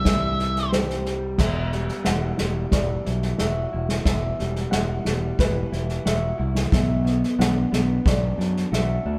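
Brooding, cinematic post-rock cut from a longer piece, where an up-front octave-fuzz lead guitar flashes a brief distorted melody in the first 0.7 seconds over a dark, slightly broken-up lo-fi electric guitar playing picked arpeggios, a felt-muted upright piano murmuring mellow arpeggios in the background, a growling overdriven fingered bass up front, and a distant, roomy soft-mallet drum kit with punchy kick, snare and crash, all played live in a stone room as the chords move from C to Emadd9 and then Bm.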